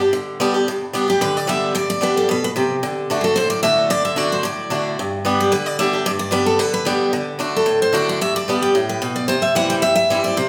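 Bluegrass with a lively, driving mood, this brief excerpt is cut from a longer piece and moves at a brisk, straight pulse in four. A picked swing-style acoustic guitar opens alone as accompaniment, its bright, boxy voice sitting up front in the lower and middle register. At 1.1 seconds a picked steel-string dreadnought enters with the melody, full-bodied and sparkling with fresh strings, also placed up front and pitched higher. The harmony moves between G and D before shifting to C as a new section begins at 9.3 seconds. Both guitars were captured as a band playing live in one room, surrounded by a generous, wet reverb from a large studio space.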